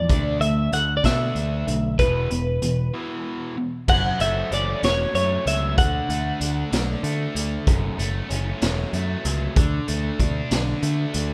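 Rolling in a lilting 6/8 with a straight feel, this upbeat, jangly indie rock fragment is driven by a raw garage drum kit of punchy kick, medium-tuned snare, hi-hat, crash and dark cymbals, its pumping small-room sound saturated and gritty with a rolled-off top. A dark, round overdriven picked bass sits up front with a direct tone, while a biting, double-tracked overdriven guitar plays the riff beneath. On top, a clean, compressed twelve-string electric guitar carries the melody through a digital delay until 7.0 seconds. After a brief break from 2.9 to 3.9 seconds, a second section moves through F#m and D chords before settling on D5. The mix has the rough, light-reverb character of a home demo recorded in a small room.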